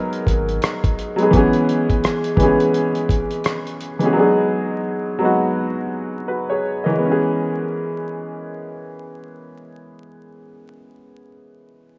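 Vinyl crackle and a lush hall reverb wash over this rough home-demo mix, a hazy, reflective lo-fi hip hop excerpt at 85 BPM in C# dorian with a swung 16th feel. A woody, slightly detuned upright piano sits up front behind a low-pass filter, moving between B6 and C#m7 across the whole passage. A gritty sampler-style kit of hi-hat, thumpy kick and rim click plays only until 4.1 seconds, and a brief, deep saturated sub bass note sounds near 0.3 seconds.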